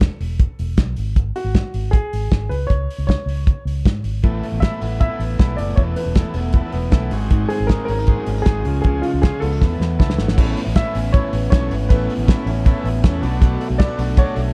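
A dark, warm production with light reverb opens this nostalgic, youthful indie pop excerpt in A major at 156 BPM, where a woody upright piano with audible action noise, tape echo and plate reverb carries the melody over round, punchy, foam-muted fingered bass and an up-front, cloth-damped drum kit with dark cymbals and a tight kick. At 4.2 seconds, a raw overdriven garage guitar, a bright, twangy clean electric guitar playing arpeggios through lush chorus, and a buzzy organ with heavy vibrato join in the background, each with plate reverb. A drum fill at 9.6 seconds and an organ fill lead into a new section at 10.4 seconds.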